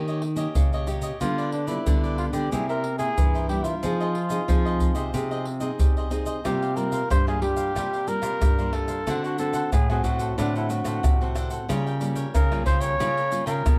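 A straight 4/4 samba-and-choro groove at 92 BPM opens the excerpt, with a close, dry percussion bed of tube shaker, pandeiro, tamborim and a tight surdo played with soft hands sitting up front, beside a crisp, bright picked cavaquinho and a fingerpicked classical nylon-string guitar. A second nylon-string guitar carries the bass line with fresh strings and audible finger squeak, while a dark, breathy jazz trumpet enters at 1.2 seconds as the solo melody, present and up front with light vibrato. The yearning, nostalgic mood moves through chords such as Eb7, Fm7 and C7sus4, heard from further back in a small room with moderate reverb.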